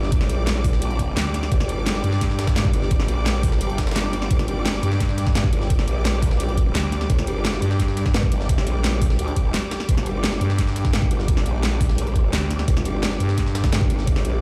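Heard through a big sound system in a bare room with large studio reverb, this aggressive, dark technical drum and bass excerpt in G minor runs at 172 BPM, with an up-front knocking electronic kick, a layered dubstep kit with a huge snare and metallic hats, and a gritty breakbeat sampler-style kit in the background with high-passed hats and snare, while a saturated, wobbling growl bass with chorus and sidechain pumping is joined in bursts by a thick FM bass from 1.2 seconds, a biting bowed string section with vibrato pumps overhead, and a short break arrives at 9.5 seconds.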